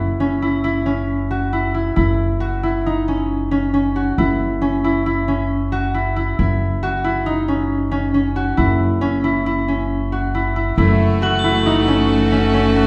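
A mellow, ringing concert harp plays arpeggios up front over a woody, thumpy pizzicato upright bass in this urgent, pensive chamber excerpt in 5/4 at 136 BPM in F# dorian, and at 10.8 seconds a nasal, earthy viola carrying a second line with light vibrato and a lush, focused studio string section holding sustained chords arrive, joined at 11.2 seconds by shimmering, bell-like crotales, all heard from further back in a recital hall with a 1.5-second reverb.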